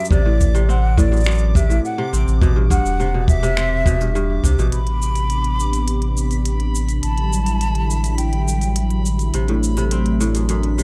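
A straight 4/4 groove at 104 BPM of finger snaps, crisp hi-hat and shaker from an overdriven electronic kit, joined by a punchy, dry acoustic kick until 4.6 s, carries this wistful, autumnal folktronica piece in A dorian, where a deep, round sub bass sits up front beneath ringing, fingerpicked kora arpeggios with delay and plate reverb, a breathy, expressive flute melody with vibrato and delay that stops at 9.0 s, a dreamy reversed granular texture in the background, and a smooth, detuned sawtooth pad with chorus that enters at 4.7 s, within a dark production with light reverb.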